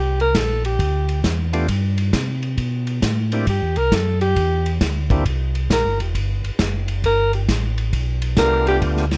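A swinging 4/4 groove at 135 BPM drives this short soul jazz organ trio passage, with a warm acoustic drum kit playing hi-hat, kick, snare and ride, its dark cymbals and tight kick set up front. Underneath, a mellow, round tonewheel organ carries the bass line, colored by chorus vibrato and a slow rotary speaker. Over the top, a clear alto saxophone with vibrato solos throughout in a narrow range, giving the music a greasy, easy swagger. A second tonewheel organ, lightly overdriven and percussive with key click and third-harmonic percussion through a slow rotary speaker, adds melodic lines from 1.5 to 5.2 seconds and returns briefly at 8.4 seconds. The harmony moves between C9, Gadd9 and G9, and the close, detailed microphones with little reverb keep the whole trio intimate and immediate.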